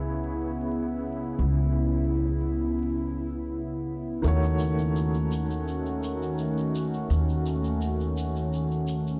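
A warbling, detuned tape-like pad sits up front with slow-attack sustained chords, colored by chorus, phaser and reverb, over a woody upright piano carrying tremolo and tape echo in this melancholic, cinematic trip hop fragment at 84 BPM in C# minor. A dark, pizzicato upright bass with tube saturation anchors the low end as the harmony moves from C#m7 to D#m7b5 at 4.2 seconds, where a tube shaker with group handclap enters. The blown-out, overdriven recording carries vinyl crackle and light studio ambience.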